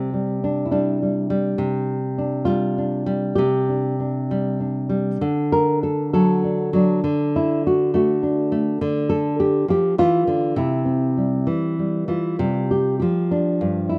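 A rough home-demo sound gives this short folk passage, cut from a longer piece, a moderate plate-reverb tail around a single nylon-string guitar placed up front. Played solo in a loose, rubato 6/8, the guitar has a dark, deep classical tone, thumb-plucked, with audible finger squeak as it moves from Csus2 through D and Dmadd11 back to C. The mood stays warm and gentle, and at 12.4 s the music shifts into a brief new section resting on Csus4.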